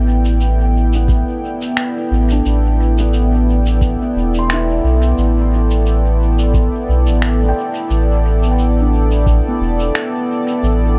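This short cut from a longer ambient dub piece is bathed in digital ambience, hazy and deep, in A minor at 88 BPM in 4/4 with a light swing on the sixteenths, resting on a single Am7 chord. Up front, a warm, smooth, detuned sawtooth pad with a sub octave and slow attack holds sustained chords through chorus, while a soft, round sub bass with a fast attack sits low and prominent. In the background, a felt-muted upright piano plays intimate, mellow arpeggios through a low-pass filter and tape echo. Sampler-style cabasa and finger snaps, pitched down, muffled and compressed, come in at 0.2 seconds with dub echo and the sound of a small room. An overdriven analog kick drum, also re-recorded in a small room and sitting in the background, enters at 1.1 seconds and drops out at 9.4 seconds.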